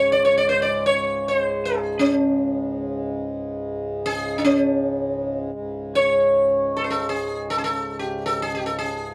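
A short, meditative excerpt of Hindustani classical music, heard in a small room with a moderate reverb that keeps the sound intimate. It moves in free time, with a devotional calm, and is tuned slightly below standard pitch at A4 = 436 Hz. The acoustic sitar sits up front and carries the melody from 0.0 to 9.1 seconds, its bright, plectrum-plucked tone buzzing and shimmering with sympathetic strings while staying round at the core, ranging from Db4 to D5. Beneath it, a pedal harmonium holds a low drone between Db2 and Ab2, reedy, breathing and airy, set well back behind the sitar. The passage falls into two statements of the same section, the second beginning at 5.5 seconds, and it is cut from a longer piece.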